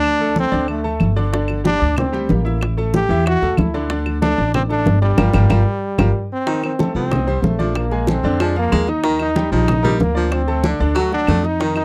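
A bright, punchy trombone with vibrato carries the melody up front over brilliant, short-sustained grand piano, thumpy pizzicato upright bass, woody claves and damped, low-tuned congas in this fiery, danceable salsa at 187 BPM, with round, soft-handed bongos joining at 1.3 seconds and a band accent and drum fill leading into a smooth-topped baritone saxophone second line at 6.5 seconds, set in a dry, close 1970s-style studio sound with light reverb.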